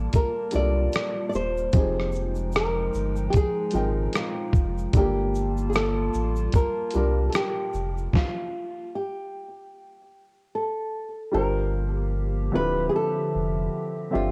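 Worn, warbling cassette-tape character and light reverb color this nostalgic, melancholic lo-fi hip hop piece in G minor at 75 BPM, where a fingerpicked flamenco guitar carries the melody over a dark, woody upright piano, a detuned tape-like pad with chorus, and a round sine sub bass with tube saturation, while a gritty, thumpy sampler-style drum kit and a grainy tube shaker drop out by 8.4 s, before the piano plays a fill at 9.7 s and the harmony moves from Gm7 to Dm11.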